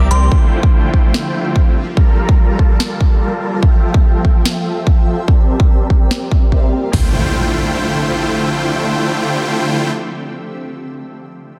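A half-time groove with lightly swung sixteenths drives this bittersweet, emotional future bass excerpt, led by an up-front big-room kit with a punchy, overdriven kick, metallic hats and toms, layered with a trap kit's sharp snare and crisp hats. Huge, detuned supersaw chords carry the riff through a filter sweep, with sidechain pumping and dub echo, while a shimmering, ethereal pad with octave-up shimmer, chorus and phaser sustains a Dm11, Gm9, Fmaj7, C7sus4 progression in the background. The drums are gone by 7.0 seconds as an electronic impact lands at 6.9, leaving the chords to ring out in a dense, heavily limited mix.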